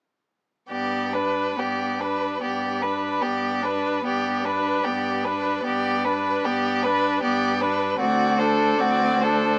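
Serene and warm, this slow romantic string quartet movement in G major drifts in a rubato 3/4 at 66-78 BPM, with a clear, smooth first violin singing the melody over a focused, up-front second violin line, a close, even viola accompaniment and a distant, rich cello bass, all bowed with vibrato from 0.7 to 9.6 seconds in a moderate studio room heard through a small speaker, moving from G to D7 at 8.0 seconds as if lifted from a longer piece.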